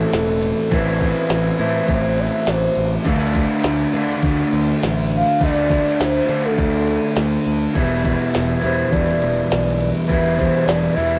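A breathy sine lead, soft in attack and full-bodied with a chorus shimmer and vibrato, opens this brooding, hazy shoegaze and dream pop rock fragment together with two electric guitars and bass, in A minor at 102 BPM in a straight 4/4. Up front, a raw garage guitar plays a dark, lo-fi overdriven riff, while a thick fuzz guitar adds a second distorted riff beneath it. A growling fingered bass, bright and overdriven, holds the low end. From 0.1 seconds an electronic drum kit joins with a deep kick, a tiny snare and ride cymbal, sitting lower in the mix than the rest. The harmony moves from Amadd9 to Dm at 3.1 seconds and then to Em7 at 7.8 seconds. The rough rehearsal-room sound carries warm saturation and a moderate studio reverb, and the piece is cut from a longer work.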